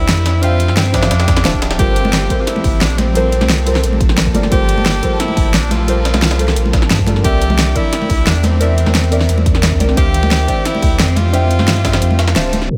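Liquid drum and bass with a soulful, dreamy mood, led by a clear, close-miked tenor saxophone solo with vibrato, roughened by vintage 12-bit sampler grit and tape echo, over deep, nasal chord stabs with chorus and tape echo and an ethereal, airy pad drifting in the background through ensemble chorus and phaser. A round sine sub bass with tube saturation sits up front beneath layered drums: a punchy electronic kick, a pop kit with a fat snare and bright hats, and a compressed, pitched-up breakbeat kit in the background, joined at 2.0 s by hard-handed, band-limited congas. The kick drops out at 12.0 s, and an electronic impact hits up front at 12.7 s.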